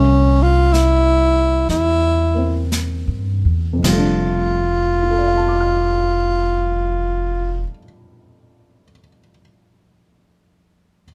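Swung eighths in a slow 4/4 at 51-68 BPM, easing down through the opening 3.8 seconds, carry this tender, late-night jazz ballad fragment in F major, where a growling, breathy, raspy tenor saxophone sings the melody up front over a woody pizzicato upright bass, a dark, mellow baby grand piano with audible action noise sits in the background and rings on alone until 11.1 seconds, and an airy, polished brushed drum kit with dark cymbals enters at 0.7 seconds, in a close, dry recording as the harmony moves from C7b9 to F6.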